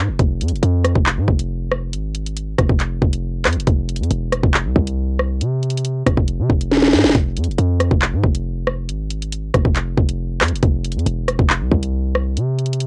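Dark, cold drill hip hop at 138 BPM in a half-time 4/4 feel, set in F harmonic minor with tuning slightly sharp at A4 = 441 Hz, cut from a longer piece. A punchy, heavy 808-style bass with a sine tone, a noise layer, fast attack and decaying notes opens at 0.0 seconds, spanning E1 to C3. The up-front electronic drum kit joins at 0.2 seconds with a hard-clipped kick, sharp snare, bright hi-hats, handclaps and rim clicks, all colored by cassette tape warmth, with a drum fill from 6.7 to 7.2 seconds, in a dry home cassette recording.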